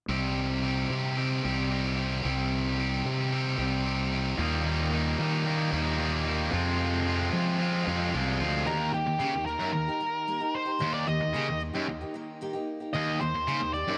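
A straight 4/4 rock groove with a swaggering, confident mood opens this excerpt, as a sludgy, bright overdriven guitar riff sits up front over a round, punchy fuzz bass moving through Cm, Eb and Fm. A tight distorted second guitar joins the riff at 4.4 seconds, and the bass drops out at 8.6 seconds. At 8.7 seconds a dark octave-fuzz lead guitar takes the melody up front while a picked steel-string acoustic guitar adds soft accompaniment, all in a light reverb.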